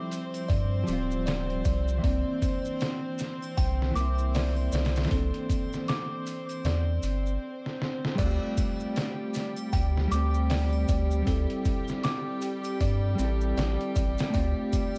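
A swung, sampler-style trip hop beat of muffled, pitched-down drums with a thumpy kick and overdrive drives this melancholic, cinematic fragment, alongside a round analog bass up front, a mellow electric guitar colored by tremolo, vintage 12-bit sampler grit and tape echo, bowed chamber strings holding earthy sustained chords, a delicate, slightly out-of-tune music box tinkling arpeggios through tape echo, and faint maracas and triangle in the background, with a brief break at 7.4 seconds where a drum fill leads into the second section, all set in a dark, small room.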